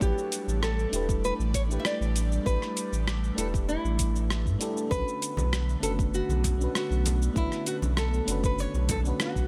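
Lightly reverberant digital ambience frames this relaxed sunset chillout excerpt at 98 BPM, where a small fingerpicked nylon-string guitar carries the melody through digital delay over a dark, round FM electric piano with chorus and an airy, breathy pad treated with chorus and phaser, while a deep, up-front sub bass, a deep layered electronic kick and a gritty, overdriven sampler-style kit of hi-hat, rim click and shaker hold the straight groove, ringing hand-played congas sit in the background from 5.4 to 9.0 seconds, and the harmony moves from A9sus4 to Bm9 at 4.9 seconds.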